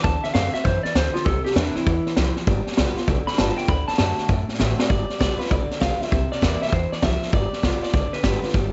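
A swung 4/4 shuffle at 198 BPM drives this rowdy, rollicking rockabilly excerpt in G mixolydian, with a punchy-kicked vintage kit up front (its high-tuned snare and hi-hat sitting mid-forward) and a thumpy, woody upright bass plucked on gut strings underneath. A twangy, slightly broken-up electric guitar through a small old amp takes a clean solo with tape echo until 4.9 seconds, closing as a drum fill lands over its final moments, while a bright dreadnought acoustic with fresh strings and audible finger squeak picks out the accompaniment over D7, C7 and G7 changes. Light reverb and a rolled-off top give the whole short clip a vintage studio-room sound.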